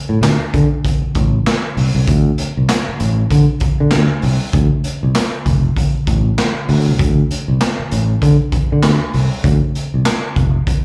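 Funk excerpt with a sly, driving mood, where a bright, growly fingered electric bass sits up front beside a raw garage drum kit of handclaps, hi-hat, boomy kick and medium-tuned snare that sounds saturated and gritty with a rolled-off top and a pumping small room, all captured as a live gig through the venue's PA with club reverb, swinging on the sixteenths.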